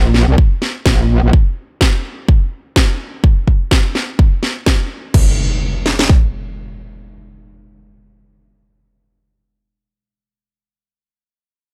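Gritty and swaggering, this short bass house excerpt at 126 BPM with a 16th-note swing opens on a metallic, wobbling FM bass, saturated and aggressive with chorus and sidechain pumping, that sounds for just over a second between Bb1 and C2, while two layered, tape-toned house drum kits recorded up front in a small room bring a punchy kick, cracking snare and crash cymbal, before an electronic impact enters at 5.1 seconds as the second section begins, all in a dry, close mix.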